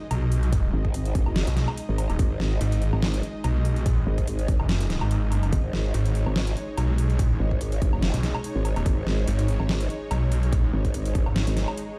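A snarling distorted saw bass dominates this menacing excerpt of heavy wobble dubstep, its detuned sawtooth unison grinding up front with a moving notch carving through the overdrive. Alongside it, a growl bass adds a wobbling, formant-filtered snarl thickened with chorus, while a half-time groove with a slight swing drives the track. The dubstep drum kit brings a deep snare, metallic hi-hats and a woodblock, all overdriven, and an electronic kick enters at 0.5 seconds with a punchy, layered thump. Far back in the mix, a lush supersaw pad holds sustained chords with a slow attack and sub octave, pumping under sidechain. A barely audible electronic impact opens the passage at 0.0 seconds, and the whole sounds as if blasted through a big sound system in a bare stone room.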